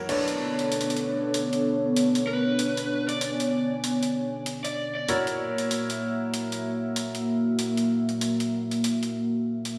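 Glitch hop at 96 BPM in 4/4 with a swung sixteenth-note feel, this short cut from a longer piece sits in B dorian and carries a swaggering, playful mood. A dark analog pad, detuned and sawtooth-edged with a sub octave and slow attack, holds sustained chords up front through a chorus effect, moving from Bm9 to F#7 at 5.1 seconds. A bright baby grand piano adds brilliant stabs with long sustain, softened by a low-pass filter and trailed by tape echo. A sampler-style boom bap kit, pitched down, compressed and gritty with overdrive, works its crash cymbal and hi-hat as though re-recorded in a large room. From 2.3 to 5.2 seconds a picked electric lead guitar through a small cranked amp plays a brief overdriven melody with tape echo. The whole mix sits in a moderate plate reverb and the stony ambience of a bare room heard over a big sound system.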